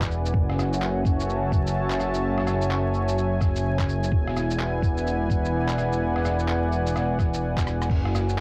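Future garage at 127 BPM with a swung 16th-note feel, this wistful, rainy excerpt moves from F#m7 to E7 as a moody, detuned analog pad holds sustained chords with slow attack and long release, colored by chorus, sidechain pumping, cassette tape and plate reverb. Beneath it a deep, rumbling detuned saw bass beats and sits up front, while a muffled, pitched-down thumpy kick and a compressed lo-fi sampler kit of cabasa, crash cymbal, handclaps, rim click and shaker add small-room ambience and tape grit. The kick stops at 8.0 seconds after a drum fill at 7.7 seconds, and the whole home-cassette recording carries vinyl crackle and light reverb.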